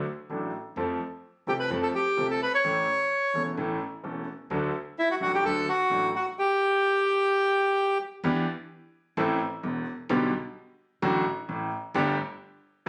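A reedy, close-miked bandoneon carries the melody up front from 1.5 to 8.0 seconds in this nostalgic, playful tango excerpt at 129 BPM with a rubato feel, over a brilliant, polished concert grand piano with deep bass and a woody, dark pizzicato upright bass in the background, all in a phone-captured room with moderate studio reverb and compression.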